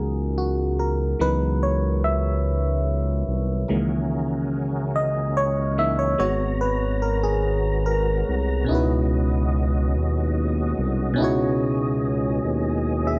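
In a slow, straight six-eight R&B sway, a glassy, bell-like FM electric piano with chorus carries a late-night, yearning solo through the first 8.7 seconds over a smooth, dark synth bass, both sitting up front. At 3.7 seconds a lightly overdriven tonewheel organ enters with sustained chords, key click, chorus vibrato and a slow rotary speaker, set lower in the mix. The harmony moves through minor-eleventh, thirteenth and minor-seventh chords in a digital ambience, and the excerpt is cut from a longer piece.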